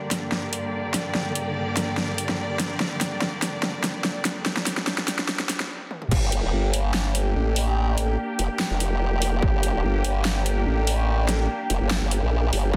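A dense, heavily limited modern master wraps this heavy, menacing wobble dubstep excerpt in a moderately lush hall reverb, set at 145 BPM in 4/4 with a half-time feel, a slight 16th-note swing, and G minor tuned to A4 = 438 Hz. A rich, smooth string section holds sustained bowed chords from G2 to D5 across the whole passage, its vibrato pulsing under sidechain pumping and a low-pass filter. From the start, an up-front dubstep drum kit with a huge snare, bright hats, handclaps, toms and crash drives a drum fill through the build-up, its tape-tinged sound set in a small room. After a brief stop at 5.7 seconds, the drop lands at 6.1 seconds, when a formant-sweep wobble bass enters between F1 and Bb1, up front and compressed, its pulse-wave and sine tone thickened by chorus and overdrive. A distorted, layered electronic kick punches in only at 6.1, 9.4 and 12.7 seconds, giving the drop its weight before the cut.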